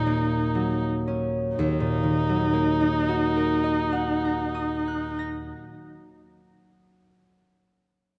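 Classical impressionist duo in Eb minor at a rubato 41 BPM in 3/4, this mysterious, wistful fragment of a longer piece slows down through its first 1.6 seconds as the harmony moves from Ebm7 to Ebm, with a rich, smooth bowed viola holding an even, vibrato-laden melody on Eb4 up front until 5.2 seconds while a ringing, fingerpicked concert harp sustains its accompaniment from Eb2 to Bb6 until 7.5 seconds, all bathed in the wet reverb of a concert hall.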